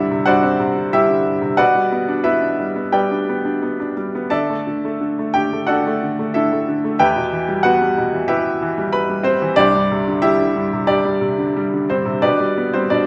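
A bright baby grand piano opens alone on a Csus2 chord and carries this lyrical classical solo from 0.0 to 13.1 seconds, reaching from C2 up to B5. The mood is cool and moody, set at 91 BPM in 4/4 with a loose, rubato feel that lets the time stretch and breathe. The harmony moves from Csus2 through G/B, Dsus2 and Em before returning to Csus2 and G/B at 12.2 seconds, giving the passage an open, unresolved colour. Placed up front, the instrument sounds intimate and brilliant, with audible action noise and a short sustain on each note. A moderate scoring-stage reverb surrounds it, and the clip is cut from a longer piece.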